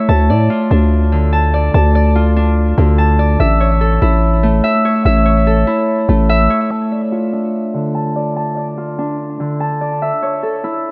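A growling, buzzy 808-style bass sits up front with a fast attack and decaying sine tone, anchoring this menacing, dark half-time trap excerpt before dropping out at 6.5 seconds. Over it, a fingerpicked Celtic harp plays ringing acoustic arpeggios through a low-pass filter and tape echo, moving between D minor and A major chords, and it carries on alone until the cut at 10.9 seconds. A light reverb gives the hip hop piece a modest sense of space.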